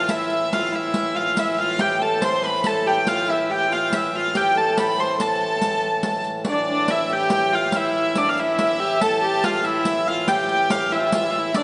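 Bathed in a wet concert-hall reverb with a softened top end, this fragment of an ancient, driving medieval dance in 6/8 at 94 BPM puts a nasal, airy hurdy-gurdy up front on the melody, joined by a gut-string fiddle on a second line, over a breathing, vintage pedal harmonium drone and the bright jingles of a close, dry riq played with hard hands, moving into a new section at 6.5 seconds.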